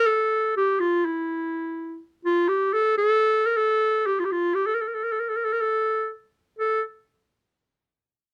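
A solo clarinet sits up front with a warm, softly attacked tone, a smooth top and a classical style, carrying this festive yet bittersweet klezmer fragment in a straight four-beat feel. It plays from the opening until 6.8 seconds, in a modest range, with light reverb. The music moves into a new section at 6.6 seconds before the fragment, taken from a longer piece, is cut off.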